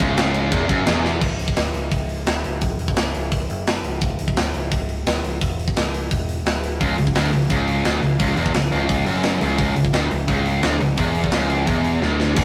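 A bright, overdriven electric guitar sits up front in this dark, heavy metal piece, cut from a longer work at 172 BPM in a straight 4/4 in C# minor. It plays a low riff alongside a scooped, high-gain second guitar mixed into the background, and both drop out at 1.2 seconds before returning at 6.8 seconds. Holding the whole passage together, a growling picked bass with overdrive and a tight metal drum kit keep going throughout. The kit, with its medium-tuned snare, tight kick, crash, ride and hi-hat, sounds mid-forward in a big room and adds drum fills around 1.0 seconds and at the close. A very quiet, distant string section lends lush, bowed sustained chords with vibrato and portamento at the opening and reappears at the very end. The rough rehearsal-room recording carries moderate reverb, giving the dark C# minor groove a raw, heavy edge.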